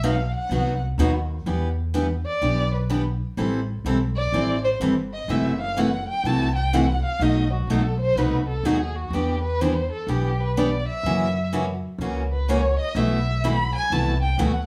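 A small room with moderate studio reverb frames this short, bittersweet and fiery stretch of acoustic string swing in the jazz manouche style, set in E minor at 125 BPM with a swung 4/4 feel. Up front, a single bowed violin carries the solo melody with expressive vibrato and portamento, its smooth top bathed in plate reverb. Beside it, a bright, full-bodied picked steel-string acoustic guitar with fresh strings and audible finger squeak plays the accompaniment, while a pizzicato upright bass on gut strings adds a woody, dark, thumpy foundation beneath changes such as Em7, Am7, F#m7b5 and B7.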